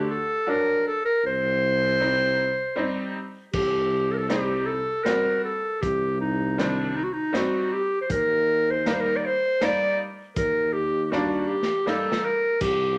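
A close-miked clarinet in a classical style carries the melody up front in this soulful, festive klezmer excerpt in 3/4, over a bright, woody, slightly detuned upright piano and a mellow tuba bass with light vibrato, while a muffled, lo-fi vintage drum kit with dark cymbals joins at 3.5 s and plays a fill at 11.1 s, the ensemble sitting in a moderate large studio reverb.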